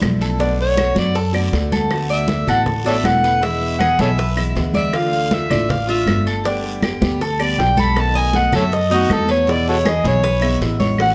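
A danceable Cuban son and guajira groove at 159 BPM in 4/4 opens with a bright, full-bodied steel-string acoustic guitar picking chords, with an audible finger squeak. Beneath it sits a woody pizzicato upright bass, up front, alongside close, dry congas played with soft hands, tight high-tuned bongos, background claves and a raspy guiro. At 0.2 seconds a metallic Cuban tres joins with picked arpeggios on its doubled strings, carrying a slapback echo. At 0.6 seconds an amplified, overdriven harmonica takes the lead for a gritty pop-style solo, up front in a plate reverb and full of vibrato, tongue slaps and scooped notes. The harmony moves through Bm7, D6, E, Dm, Gadd9 and B7 before returning to E, in a moderate studio room, and this cut from a longer piece ends at 11.1 seconds.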